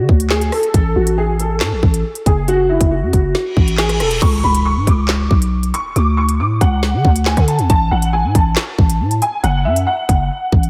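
A dreamy, reverb-soaked mix opens this short, dark and ominous drill excerpt at 138 BPM in a half-time feel, where a mellow, slightly detuned upright piano with a boxy, woody tone carries the melody through ensemble chorus and tape echo over chords moving from D to F#madd9 and F#m. A growling, buzzy 808-style bass with a fast attack and decaying notes sits up front beside a produced electronic drill kit of hard-clipped kick, crisp hats, rim clicks, handclaps, crash cymbal and a snare with its own wooden snap. In the background, a reverse cymbal rises from 3.5 seconds into an impact at 4.2 seconds, marking the shift to the second section.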